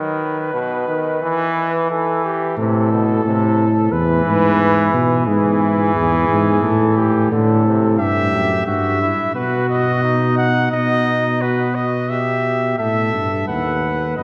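Driving and solemn, this classical imitative canzona for brass ensemble moves at 88 BPM in 4/4, opening with a second trumpet line shaded by light vibrato over a brilliant, roomy trombone accompaniment, joined at 2.6 s by a mellow, close-miked tuba bass, until at 8.0 s the trombone drops out and a warm, smooth-topped lead trumpet takes the melody up front, the brass ringing in a wet church reverb with a faint mains hum in this section cut from a longer piece.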